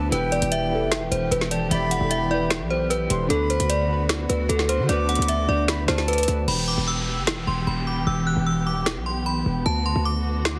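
A half-time trap groove at 151 BPM in 4/4 drives this brooding, melancholic E minor hip hop passage, cut from a longer piece, with an up-front trap kit of woody snare, finger snaps, crash cymbal and metallic hats beside a punchy, heavy 808-style bass. A ringing, inharmonic FM bell carries the melody through chorus and phaser over lush, bowed studio strings with vibrato, while glassy digital keys with chorus and a reedy, airy concert flute second line with tape echo both fall away near 6.5 seconds, where the hi-hats mute and an electronic downlifter enters. The whole sound is heavily compressed, like a radio broadcast.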